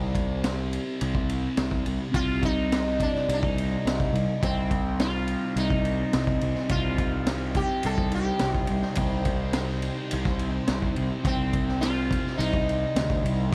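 Psychedelic rock in C minor at 106 BPM, this brief, mysterious excerpt from a longer piece has a trippy, straight 4/4 feel built on a single C minor chord. A dark, double-tracked fuzz guitar riff with distortion and phaser runs from the start alongside a round, punchy overdriven bass that sits up front. A raw garage drum kit of boomy kick, high-tuned snare and ride cymbal sounds gritty and saturated, its top rolled off in a small room. At 2.2 seconds a plucked sitar melody arrives, buzzing and shimmering with sympathetic strings and tape echo. From 4.4 seconds a very quiet, lush string machine adds sustained, mellow chords with ensemble chorus and a moving notch. The whole recording is dry and close, with the character of a 1970s studio.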